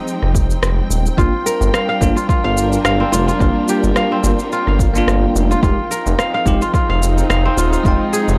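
Organic downtempo in F dorian at 108 BPM, this hypnotic, mystical passage is cut from a longer piece and moves in 4/4 with a light 16th-note swing. A dark, woody studio string section holds lush bowed chords with vibrato from the start, breathing with sidechain pumping, while an electronic shaker and rim click, tape-warm and set in a large room, join almost at once. An up-front synth bass, smooth and detuned with sawtooth and square tones, tube saturation and a moving notch, sits low between Eb1 and G1, and a punchy, layered electronic kick, re-recorded in a small room, arrives at 0.3 seconds. At 1.2 seconds a bell-like, bright tine electric piano and a ringing, crisp fingerpicked kora enter together, both carrying tape echo, the kora playing arpeggios up front while the piano also breathes with sidechain pumping. The harmony shifts from Fm7 to Gm7 and back to Fm7 at 5.6 seconds, all within a dry, gritty hardware recording bathed in digital ambience.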